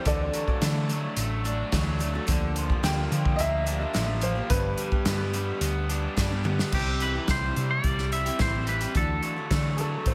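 A steady, straight 4/4 pulse at 108 BPM drives this warm, jangly excerpt of folk rock and heartland rock in C lydian, cut from a longer piece. A clear, woody upright piano with audible action noise carries the opening as a solo over the band until 6.7 seconds, its notes touched by slapback echo and digital delay, and it returns briefly near the close. Underneath, a full-bodied jumbo steel-string acoustic guitar picks out the accompaniment while a raw, double-tracked garage guitar drives an overdriven riff with slapback echo, and a dark, round hollow-body short-scale bass anchors the low end. The natural country drum kit sits up front with a punchy kick, a medium-tuned snare, hi-hat, crash and toms, and a drum fill at 6.5 seconds leads into the second section. There a bright, clean, twangy electric guitar takes the melody over chords moving from C back to Dadd9, with its own slapback echo. 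A lush hall reverb gives the whole mix a big arena sound.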